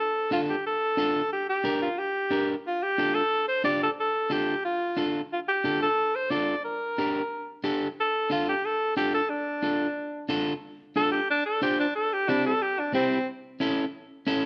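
A clear, vintage-toned alto saxophone leads this fiery, danceable Latin excerpt, carrying a pop-style melody up front at a brisk 180 BPM in a straight 4/4 feel. Just behind its entrance, at 0.3 s, a bright, twangy electric guitar joins with picked accompaniment, slightly broken-up and also placed up front. The harmony sits in D minor, moving mostly between Dm and Gm before turning to C and then A near the close. From 10.6 s the saxophone takes a solo turn, and it drops out at 13.3 s while the guitar carries on to the end of this fragment of a longer piece. A moderate large-studio reverb gives both parts a roomy, open setting.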